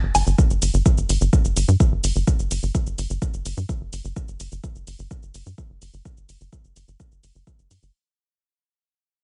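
A deep, layered electronic kick with a tape-warm, small-room character sits up front from 0.4 seconds in this dramatic, cinematic melodic techno excerpt cut from a longer piece. Beneath it, a tight, punchy sawtooth-and-square sequencer bass drives with a fast-attack filter pluck and sidechain pumping, and a filter sweep runs through it. Dry, overdriven analog hi-hat, shaker and woodblock add grit, all set in a digital ambience whose top end stops at 10.5 kHz as the whole passage fades out.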